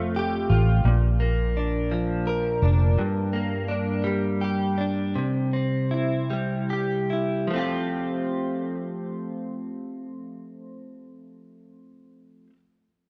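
A swaying six-eight lilt carries this heartfelt pop ballad excerpt, which slows down between 3.0 and 7.5 seconds as the chords move from Fadd9 and Bb through Gm and C before returning to Fadd9. A clean, compressed, double-tracked electric guitar, recorded direct and sitting up front, plays picked accompaniment throughout, while a dark, round, foam-muted electric bass adds punchy low notes only until 3.0 seconds. A concert hall reverb surrounds the parts, and a worn cassette-tape character gives the sound a warbly pitch drift.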